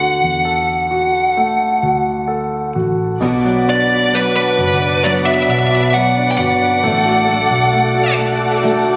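A dark, compressed fuzz lead guitar sits up front with distortion and delay, carrying the melody of this emotional, heartfelt pop fragment over a slow, straight 4/4 until it drops out at 8.1 s, while an intimate concert grand piano with deep bass, audible action noise and long sustain, plus a round, foam-muted fingered electric bass, hold the accompaniment from the start. At 3.2 s the harmony moves from D to Bm as a smooth-topped studio string section enters with bowed, sul tasto chords and vibrato, joined by a full-bodied jumbo steel-string acoustic guitar picking delayed arpeggios, before the chords settle on D/A. The whole short cut from a longer piece is heard as if captured on a phone in the room, washed in a lush hall reverb.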